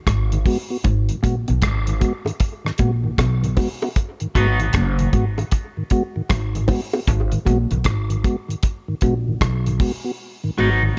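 Deep and spacious, this slow dub reggae piece moves at 77 BPM in G# minor with a swung sixteenth feel, resting on a G#m7 chord. A woody pizzicato upright bass and a dry, dark 70s drum kit with a tight kick, hi-hat and rim click sit up front beside a soft, flute-like tonewheel organ turning through a slow rotary speaker, while a very quiet, clean, fingered electric guitar plays a low riff until 6.5 seconds. Close, high-tuned bongos with dub echo enter at 2.3 seconds, and a bright, twangy guitar at the edge of break-up flicks in briefly with its own dub echo at 4.4 seconds, inside a light reverb and a softened top end.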